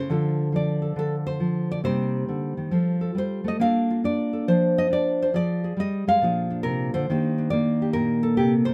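A moderate studio reverb surrounds an up-front, full-bodied nylon-string guitar in this smoky, swinging 8.7-second solo jazz fragment cut from a longer piece. Fingerpicked with a deep classical tone, the guitar ranges from Bb2 to F5 in a loose, rubato swing, moving through chords from Dm7 and Cm7 to Bbmaj7, then Fm and Bb7 before arriving on Ebmaj7 at 7.1 seconds.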